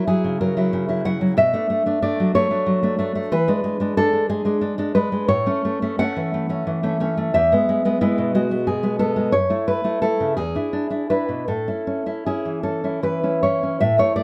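A fingerpicked nylon-string guitar carries this brief romantic fragment on its own, sitting up front with a full-bodied, fresh-stringed tone. The mood is sunny and warm, moving in 6/8 with a free, rubato feel that lets phrases breathe. Its range stretches from a low E2 bass up to F#5. The harmony opens on F#7 and drifts through rootless Bm7 and E7 voicings before settling on A at 5.3 seconds, then travels through E, F#m7 and E7 back home to A at 11.5 seconds. Close, detailed microphones capture the guitar with a light touch of reverb, and the passage ends at 14.2 seconds, cut from a longer piece.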